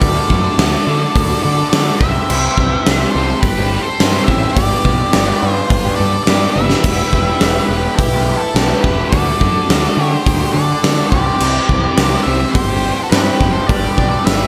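The full band hits together from the opening moment of this swaggering, driving classic rock passage in a straight four. A dark, fuzz-soaked lead guitar carries the melody with slapback echo, shadowed in the background by a second picked fuzz line that adds analog delay to its own slapback. Beneath them, a raw, lo-fi garage guitar plays a double-tracked overdriven riff through phaser and slapback, while a growling bass, direct and amped, pushes hard from the low end. A very quiet, boxy twelve-string acoustic, fingerpicked and octave-doubled, shimmers underneath as accompaniment. The big drum kit sits up front with a fat snare, punchy kick and a bright stone-room character, and it drops a fill at 6.6 seconds as the chords cycle through D, C, G and E minor, all set in a lush hall that gives the cut an arena-sized sound.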